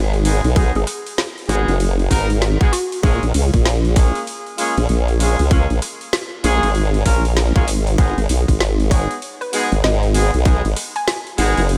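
A lightly reverberant mix puts a tight electronic kick and a detuned, formant-filtered wobble bass up front, with chorus on the bass, in this playful, funky glitch hop excerpt at 97 BPM in 4/4, swung on the sixteenths and set in G# dorian over G#m7 and A#m7 chords. A drum and bass kit of woody snare, rim clicks and metallic hats, re-recorded in a small room, runs underneath, while a distant, roomy horn section with light vibrato and octave doubling plays stabs through 12-bit sampler grit, sidechain pumping and tape echo. A woody, wave-folded pluck carries the melody in the background from 0.6 to 3.1 seconds and returns at 8.9 seconds, its filter-swept tone dressed in analog chorus, sampler grit and tape echo.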